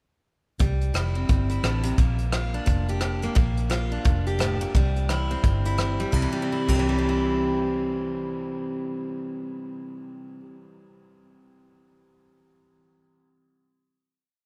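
Honky-tonk and classic country at a brisk 174 BPM with a swung feel in C mixolydian, this short, down-home and sunny piece opens at 0.6 seconds with a bright, full-bodied acoustic guitar up front, played fingerstyle with an alternating, palm-damped thumb over a dark, round, foam-muted electric bass playing a two-beat root-and-fifth line with walk-ups. From the same moment, soft brushes, a punchy kick, hi-hat, ride and rim clicks drive a country two groove through a brief interlude moving from C to Bb and back. The drums stop at 6.8 seconds while guitar and bass ring out on a final C chord, all bathed in a moderate cathedral reverb in a vast, echoing space.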